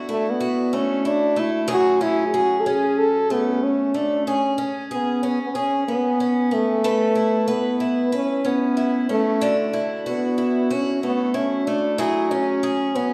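A gently swung 16th-note pulse at 93 BPM in 4/4 carries this sunny, easy-going pop excerpt, where an up-front picked twelve-string acoustic guitar, boxy and shimmering with its octave-doubled strings, accompanies a warm French horn melody played solo in a classical style with light vibrato, both ringing in the wet reverb of a church or concert hall as the chords move from Dadd9 through F#madd9, C#5 and Aadd9.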